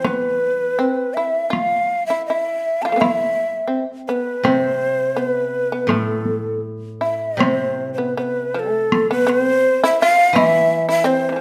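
A moderate recital-hall reverb gives this short cut from a longer piece of Japanese chamber music a sense of open, resonant space, with the shakuhachi and shamisen placed up front. The mood is meditative and austere, moving in an uneven, rubato 2/4 that seems to breathe rather than march. The end-blown bamboo shakuhachi carries the melody, its hollow, breathy tone marked by vibrato, a crisp chiff on each attack and lifted highs. Beneath it the fretless shamisen plays a plectrum-plucked second line, bright and percussive with a buzzing edge. A dry, woody koto, played with fingerpicks, sounds only briefly at the start and returns at 4.4 s, while solo taiko struck with hard sticks add compressed, saturated strikes until 10.5 s, shortly after a new section begins at 7.4 s.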